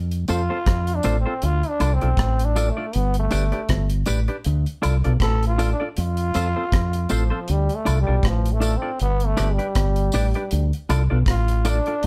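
Laid-back and meditative, this roots reggae cut from a longer piece settles into a loose, swung groove as a band plays together live in one room under light reverb. A fingered electric bass sits up front from the very start with a dark, round tone, joined almost at once by a dry, deep reggae drum kit of hi-hat, rim click and a tight kick. From 0.3 seconds a growling trombone takes the solo throughout, its raspy, gritty voice punchy and present, with vibrato and a brilliant edge that keeps it at the forefront. Beneath it, a semi-hollow electric guitar adds clean, compressed, hollow-body accompaniment, while tambourine and woodblock sit quietly in the background with a saturated touch. The harmony cycles patiently through F, Dm, G and back to Dm, giving the solo a steady, unhurried bed to roam over.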